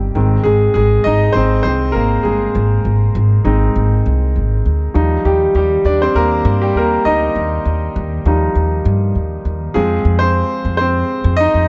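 A straight, steady four-beat pulse carries this hopeful, uplifting piano-driven pop passage, cut from a longer piece. A brilliant concert grand sits up front, its smooth, vintage tone reaching down into a deep bass register as it plays solo passages. Beneath it, a woody upright bass with steel strings is plucked pizzicato, also placed close to the listener. The harmony moves from Ab to Ebadd9 at 5.0 seconds, and at 9.8 seconds a new section turns to Fm. Light reverb gives the pair a gentle sense of space, and the top end is softly rounded.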